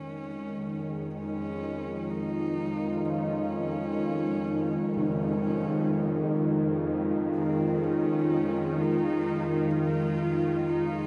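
Unsettling and ominous, this dark ambient drone drifts in free time, tuned to A4 = 436 Hz and cut from a longer piece. A string-like, tense drone sits low and up front, its detuned sawtooth body carrying a noise layer, vibrato and its own reverb. Above it, a sweeping, resonant pad holds a Dbadd9 chord, evolving through a filter swell with a bright, chorused shimmer. A dark horsehead fiddle carries the melody, fading in gradually across the full 11.1 seconds. It is a single husky, intimate player with an airy bow, light vibrato and gliding portamento. At 5.0 seconds a very quiet tam-tam sounds close and dry, while a huge, wet reverb with a long 8.1-second tail surrounds the whole piece.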